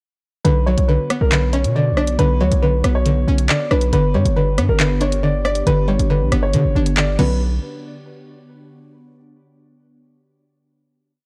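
Dark, lightly reverberant production frames this short, ominous and tense drill hip hop piece at 138 BPM in a half-time feel in B minor, where a woody upright piano with audible action noise loops a melody through digital delay over a twangy, chorused resonator pluck arpeggiating on a pedal note in eighths, while a glassy, ethereal FM pad with ensemble chorus enters at 1.0 seconds in the background, a punchy, saturated 808 bass sits up front with long sub notes and pitch slides, and a gritty 12-bit-sampled drill kit drives skipping bright hi-hats with fast rolls, rim clicks, handclaps and crash until a final hit at 7.4 seconds.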